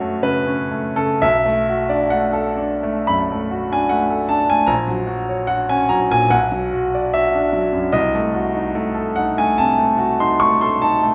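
Classical romantic character piece for solo piano, stormy and bittersweet, cut from a longer work. A clear, natural grand piano sits up front in a wet recital-hall reverb, moving with rubato at roughly 57-77 BPM in 4/4 across a span from deep bass to high treble, as harmonies shift from F#m through Bm7 and F#/A# to Bm before arriving on a Cdim7 chord at 8.0 seconds.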